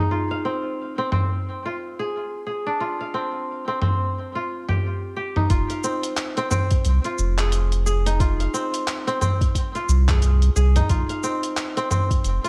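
Lightly reverberant and close, this hypnotic, meditative organic downtempo fragment in F dorian moves at 89 BPM in 4/4 with a swung 16th-note feel. A crisp, ringing fingerpicked kora plays arpeggios through a digital delay and a filter sweep over a Csus4, and at 1.1 seconds a gritty, compressed sampler-style kit joins with handclaps, hi-hat, shaker and toms that sound re-recorded in a large room. At 5.5 seconds the harmony shifts to Fm7 as a deep, round, sustained sine sub bass with tube saturation and sidechain pumping arrives up front, together with a soft, overdriven electronic kick.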